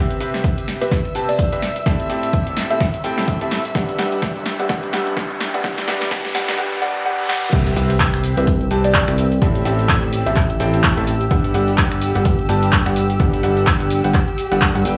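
A swung 4/4 groove at 127 BPM drives this uplifting, euphoric piano house clip in G major, cut from a longer piece, where a punchy analog drum machine with snare, claps, finger snaps, hi-hat, shaker and crash rolls through a drum fill during a filter-swept build-up, and an electronic kick thumps from 0.4 s. A bright, brilliant concert grand with audible action noise pumps its riff under tape echo and a low-pass filter over Cmaj7, Am7 and Gmaj7 chords, while a veiled, con sordino violin section holds sustained chords and a woody kalimba adds short echoed phrases in the background. A background riser lifts toward the drop at 7.5 s, where an impact and sub drop land and a fat, detuned sawtooth bass enters up front, all given a gritty cassette character and light studio reverb.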